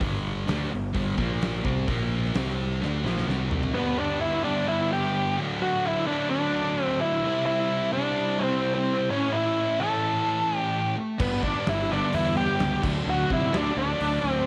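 An octave-fuzz lead guitar sits up front in this sunny, confident classic rock excerpt, its dark, distorted melody coloured by tape echo from 3.7 seconds onward. Beneath it, a double-tracked, sludgy distorted guitar drives an overdriven, picked riff at 129 BPM in a straight 4/4 in G major. The opening bars are heavy power chords from the guitar, growling fingered electric bass and a big rock drum kit, capped by a drum fill at 2.8 seconds. The bass and drums then drop away, leaving the two guitars over a bright progression through G, D, C and A until the rhythm section returns at 11.2 seconds. The drum kit has a big-room sound with a fat snare, punchy kick and rolled-off top, while the bass comes through bright, direct and amped with its own grit. Light reverb and studio ambience round out the mix.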